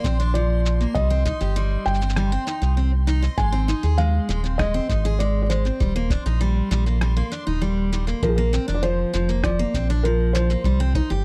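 Folktronica at 99 BPM in Ab lydian, delicate and warm, this short cut from a longer piece sets a felt-muted upright piano carrying a mellow, intimate melody with audible action noise beside picked arpeggios on a bright, full-bodied steel-string acoustic guitar, both touched with tape echo. Underneath, a round analog bass sits up front with a deep, dark sustain, while a punchy kick stays in the background and a sampler-style electronic cabasa and rim click, pitched down and muffled, join at 0.1 seconds. A reversed, dreamy swelling texture with granular detune and its own reverb hovers faintly high above, all in a dry, close 1970s-style studio sound moving through Bbadd9, Cm, Ab and Eb.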